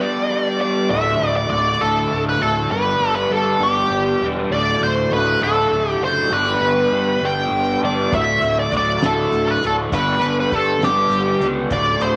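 A slow 6/8 at 67 BPM sets up this trippy, hazy psychedelic rock excerpt in D major, where a bluesy lead guitar with wah and distortion sings the melody up front over a crunchy, double-tracked rhythm guitar riff churning through a rotary speaker, the two opening together before a growly fuzz bass joins at 0.9 seconds. The chords rock between G and D, and at 8.1 seconds a cloth-damped, thuddy drum kit with a fat snare and tight kick slips in behind, dark and rolled-off in the background. A large, wet studio reverb and a layer of vinyl crackle give the whole recording a vintage, smoky haze.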